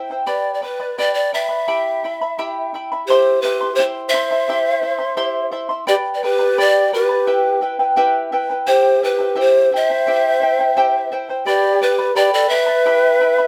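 A bright, shimmering charango opens at 0.0 seconds, its fingerpicked double strings, some doubled at the octave, sitting up front in this earthy, melancholic Andean folk passage cut from a longer piece. At 0.3 seconds a mellow bamboo pan flute takes the melody, its tongued notes carrying a breathy chiff and gentle vibrato close to the listener. From 3.1 seconds a large end-blown quena adds a second line beneath it, its wooden tone hollow and warm, with its own vibrato. The music moves at an unhurried 86 BPM in a straight 2/4, cycling through G, E minor and C as the opening section repeats with the fuller trio. A moderate studio reverb gives the instruments a modest sense of room.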